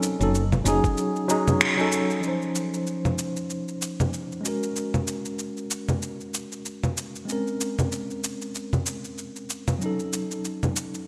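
Smooth and relaxed, this short sunset chillout excerpt moves at 95 BPM in 4/4 with a swung sixteenth-note feel in Db major. A clean tine electric piano carries the accompaniment throughout, its tone shimmering with medium tremolo and delay through a combo amp, set up front in the mix. Gritty, overdriven electronic shaker, congas and finger snaps run the full length with gated reverb and a compressed, sampler-style edge. A round, woody fretless electric bass sounds only briefly on a low Gb near the start, followed by a thumpy, overdriven electronic kick drum at 0.8 seconds, and the band hits an accent from 1.6 to 1.9 seconds. The harmony drifts through Gbm6, Dbmaj9, Ab9sus4 and Bbm9 before returning to Gbm6, all bathed in a lush plate reverb and a bright 1980s-style digital sheen.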